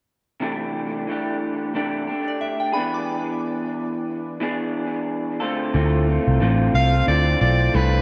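A gently swung sixteenth-note feel in 4/4 carries this mellow, wistful indie pop fragment, cut from a longer piece. An electric guitar through a small old amp opens the accompaniment at 0.4 seconds, sounding slightly broken-up, lo-fi and compressed up front, with lush chorus, vibrato and dub echo. A soft synth bell floats briefly above it as a second line, pure and warbling with a vintage FM sheen, its fast attack decaying into its own chorus and echo. At 5.7 seconds the second section arrives as a dark, round, foam-muted picked bass steps to the front and a flute-like tonewheel organ hums in the background through a slow rotary speaker and cassette tape coloring. An edgy, forceful soprano saxophone takes the melody at 6.7 seconds, punchy and smooth on top with vibrato, chorus and dub echo. Moderate spring reverb and an echo-heavy mix drift over harmony that moves from C69 to E7 to Dm7.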